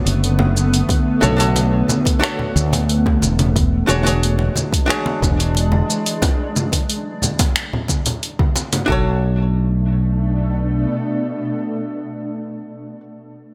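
A straight 90 BPM groove in 4/4 from an up-front, tape-warm deep house kit of finger snaps, hi-hat and shaker, a deep electronic kick and ringing congas carries this wistful, relaxed sunset chillout excerpt in B dorian, where a round, punchy fretless bass sits forward, a clean, compressed hollow-body archtop guitar plays picked accompaniment through tape echo, and a shimmering, detuned pad holds sustained chords with chorus over Bm7, E13 and A6 until the drums drop out near 8.9 seconds and the bass by 10.9 seconds.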